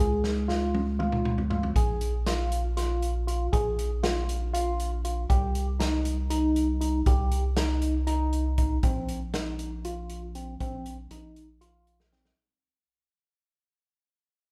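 Heard live in a large studio room with moderate reverb, this tense, intricate excerpt of progressive instrumental band music in 7/8 at 238 BPM (eighths) and Bb dorian sets a barky, overdriven tine electric piano playing arpeggios through a phaser over a rubbery, hollow square bass and a vintage acoustic drum kit with a punchy kick, which opens with a fill at 0.2 seconds as the chords move from Db through Bb5 and Cm to Bbsus24 before a fade-out from 8.8 seconds.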